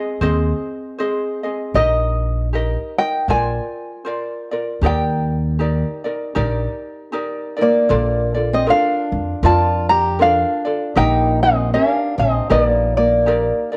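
A small room with light reverb frames this relaxed, sunny Hawaiian swing at 78 BPM in 4/4, where an up-front, fingerpicked tenor ukulele carries a light, warm melody over a softer fingerpicked ukulele accompaniment and a dark, woody pizzicato upright bass with steel strings and transformer saturation, before a boxy, ladder-braced acoustic guitar with old strings adds a fingerpicked second line at 7.6 s as the music moves from Eb major to Bb major at 7.9 s.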